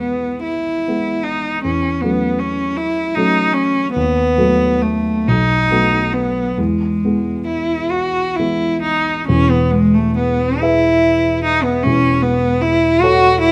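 In a flexible, rubato 6/8 lilt, this lyrical and tender passage from a longer romantic classical duo features a single bowed cello carrying the melody up front with a rich, intense tone, a smooth top and light vibrato, while a dark, mellow baby grand piano, also close, supplies the accompaniment, both framed by the moderate reverb of a large studio.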